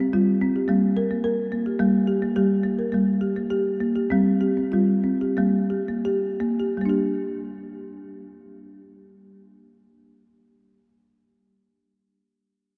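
A lone folk marimba played with soft mallets opens this gentle, hypnotic world-meditative fragment, its hardwood bars giving a woody, rustic, round tone. The instrument sits up front within a vast, echoing space, where a long cathedral reverb lets each note hang in the air. The harmony drifts between an F5 over G and G minor, keeping the music suspended and calm. From 1.8 seconds the pace gradually slows, easing into a new passage at 6.8 seconds. The marimba plays throughout until about 11.1 seconds, in a short passage cut from a longer piece.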